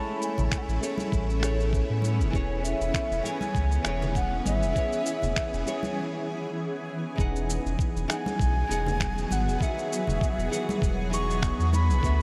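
Drenched in a huge, dreamy reverb, this smooth, warm sunset chillout piece moves with a gently swung 16th-note feel, led by a pure, woody flute melody with vibrato and a crisp attack, trailed by analog delay. A fingerpicked nylon-string guitar, its finger squeak audible under a low-pass filter and delay, plays alongside an ethereal, bright pad that shimmers with chorus and phaser. Tape-tinged cabasa and finger snaps enter at 0.2 seconds, followed at 0.4 seconds by ringing hard-hand congas in the background and a deep, round sub bass up front, and at 0.5 seconds by a gritty, thumpy sampler-style kick. Together they carry the groove through a break at 6.0 seconds into a lush Emaj9 section at 7.2 seconds.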